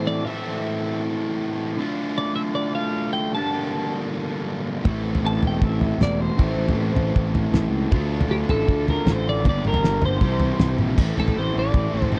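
A cloth-damped, thuddy drum kit sits up front, with a fat snare, tight kick, toms and dark crash cymbals, entering at 4.9 seconds alongside a round, overdriven fuzz bass. This is a cool, restless indie rock excerpt at 157 BPM in a straight 4/4, and it is cut from a longer piece. From the start, a double-tracked fuzz guitar drives the riff, while a compressed, clean twelve-string electric guitar carries the melody, shimmering through lush chorus and tape echo. The chords move through Am, Dm and Gmadd9, then return through Am, Dm, Gm and C. At 11.0 seconds a clean electric guitar solo arrives as the section changes. The sound is dry and close, in the manner of a 1970s studio recording, with the drums' top end rolled off and a small-room feel.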